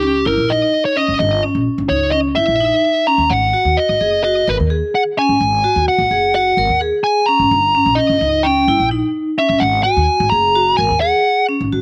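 Driving and brooding, this short cut from a longer progressive instrumental piece moves in an uneven 9/8 with a straight feel. An up-front fuzz lead guitar carries the melody as a solo, its dark, distorted, picked tone sitting in the upper register until it drops out at 11.4 seconds. Beneath it, a vibraphone struck with hard mallets plays arpeggios, metallic and airy, with a medium motor vibrato and a slapback echo. An upright bass anchors the low end with woody, thumpy pizzicato on steel strings, sitting lowest in the balance alongside the vibraphone until 11.8 seconds. The harmony shifts between D#7b9/G, G#5 and D#7/G, and the whole band is set in an open-air space touched by light reverb.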